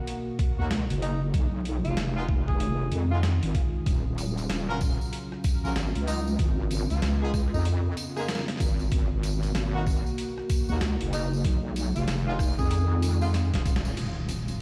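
A warbling, nostalgic tape-like pad opens this glitch hop excerpt, holding a rootless Abm9 in the background with chorus, sidechain pumping and its own reverb, as a gritty, pitched-down boom bap kit of hi-hat, rim click, medium-tuned snare and crash arrives at 0.1 seconds, followed at 0.4 seconds by a thumpy, compressed electronic kick up front. At a swung 95 BPM the mood is playful and swaggering, anchored by a heavy, saturated wobble bass with a resonant, detuned square-and-sine character and chorus. A section of horns adds smooth-topped stabs with light vibrato, pumping and dub echo, while a breathy, distant tenor saxophone carries a whispered, intimate jazz melody with scooped notes, subtone and its own dub echo from 1.0 seconds. A jingly, bright tambourine joins at 3.9 seconds as the harmony cycles through Fm7b5, Ebm9 and Db7. Near the close a drum fill and band accent lead into an electronic impact at 14.0 seconds, all heard through a stone-room ambience with vinyl crackle, as if played on a big sound system in a bare space.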